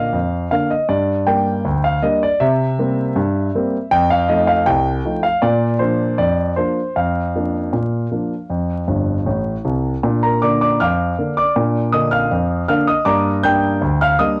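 A solo concert grand piano opens this short cut from a longer piece of lively, jaunty ragtime in Bb major, moving at 79 BPM in a straight 2/4 across a range from G1 to G6. Its tone is polished and up front, with deep bass and short sustain, passing through Bb, Gm, C7 and F7 before a piano fill at 8.9 seconds leads into a restatement of the opening strain at 10.0 seconds. The home cassette recording adds tape colouring, vinyl crackle, a dulled top end and moderate studio reverb.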